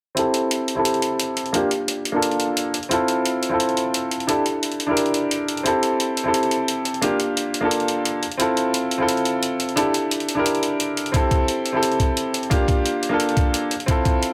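A moderate recital-hall reverb surrounds this dreamy, lush liquid drum and bass fragment at 175 BPM, where an up-front baby grand piano with a clear, open tone and long sustain plays accompaniment chords between Bb3 and Bb4, colored by tape echo and a low-pass filter sweep. A compressed, gritty electronic hi-hat runs from 0.2 seconds, re-recorded in a small room, and a thumpy kick drum joins at 11.1 seconds. The harmony cycles through C6, a rootless Gm9, Fmaj7/C and Gm6/D.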